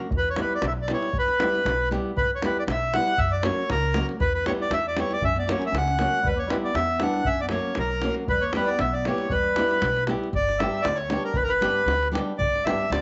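A studio sound with light reverb and a soft, rolled-off top end frames this restless, fiery Balkan wedding-band piece, cut from a longer performance and moving at 117 BPM in a swung 2/4 in E dorian with a raised fourth. A reedy, mid-forward accordion sits up front carrying the melody, standing clearly above the rest of the band. Beneath it, a fingerpicked acoustic flamenco guitar supplies the accompaniment, a woody, dark pizzicato upright bass holds the low end, and a deep, vintage-sounding davul drives the percussion. From 5.2 to 10.0 seconds a distant, roomy clarinet in a classical style adds a soft second line in its lower register. The harmony swings between E minor and F sharp before the closing section turns to G at 10.3 seconds.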